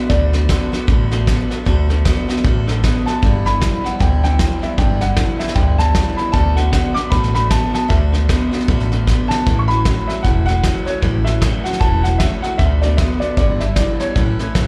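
Heard through a club's PA with a light, roomy reverb, this retro, rollicking rockabilly excerpt has a light swing in 4/4 over chords built on sixths. A woody upright piano carries the melody with plate reverb and slapback echo, while a twangy, slightly broken-up electric guitar through a small old amp plays the riff and a bright, picked dreadnought acoustic with finger squeak picks out the accompaniment, both also touched with slapback. Underneath, a growly, thumpy pizzicato upright bass and an up-front brush kit with a fat snare and tight kick drive the groove, with a drum fill at 9.1 seconds.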